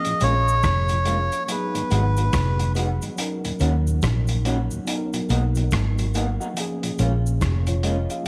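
A swung, smooth and longing lovers rock reggae groove at 71 BPM rides a crunchy, gritty breakbeat kit of hi-hat, tight kick and rim click beneath a round, foam-muted fingered electric bass up front, while a reedy, breathy melodica carries the tape-echoed melody only until 2.7 seconds. Around them, a clean tine electric piano through phaser, a dark tonewheel organ with vibrato and tape echo sitting in the background, twangy stabs from a slightly broken-up guitar through a small old amp, and a cabasa fill out this piece cut from a longer one, moving through Bbm7, Abm7, Ebm7 and Bmaj7 in light studio reverb.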